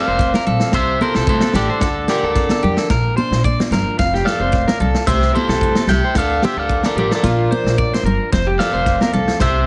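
A twangy, slightly broken-up electric guitar carries the melody up front in this joyful, carefree highlife excerpt, as a second electric guitar plays arpeggios through slapback echo, a bright, full-bodied picked acoustic guitar sits in the background, a woody, thumpy upright bass and a vintage drum kit with a tight kick and rolled-off top hold down a lightly swung groove, and damped, high-tuned congas add percussion in a small room with light reverb.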